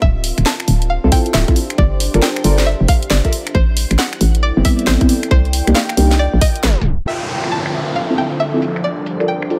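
A layered, produced sound opens this moody, skippy two-step UK garage excerpt, where a tight up-front kick drives along and a hollow, bouncy FM bass pumps beneath a deep, dark ambient pad that fades in, while a garage kit of finger snaps, low-passed hats, shaker and cracking snare swings along, soft, detuned chord stabs run through phaser and dub echo, and a twangy, warbling string-like resonator pluck with vintage sampler grit carries the melody until a tape stop at 6.6 s drops the bass and kick, letting a smooth analog pad and an electronic downlifter enter at 7.1 s.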